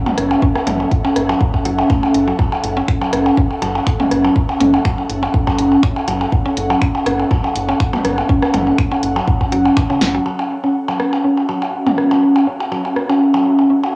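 Heard through a wet booth ambience and the soft haze of a home cassette recording, this clinical, hypnotic minimal techno excerpt in F# minor at 122 BPM sets an ethereal, airy pad with ensemble chorus and sidechain pumping over a woody, round mallet-like synth pluck riff with analog delay, a minimal click kit of blips, rim clicks and toms, a rubbery square bass, a house kit of finger snaps, bright low-passed hats and a punchy snare, and an up-front punchy electronic kick, until a drum fill and band accent at 10.0 s lead into a barer stretch where a very quiet, swarming drone enters at 11.5 s.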